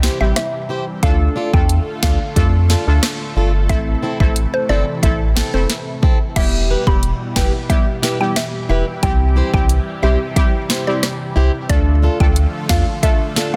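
A dense, heavily limited modern mix in a digital ambience frames this tough, bouncy dancehall excerpt at 90 BPM in E phrygian, tuned to A4 = 436 Hz, moving from C, Dm and Am into Em, C and Dm as a second section arrives at 6.4 seconds. Up front, an overdriven electronic afro-pop kit with a deep kick, sharp snare, dark hats, rim clicks and crashes drives over a full, mellow sine-and-triangle sub bass with octave. A woody, FM mallet-like pluck with chorus, phaser and delay carries the melody from 0.2 seconds, joined by punchy sawtooth brass stabs with chorus, while a boxy, fingerpicked plugged-in swing-style acoustic guitar plays delayed arpeggios over a thick, detuned unison pad that sustains bright chords through chorus, phaser and sidechain pumping.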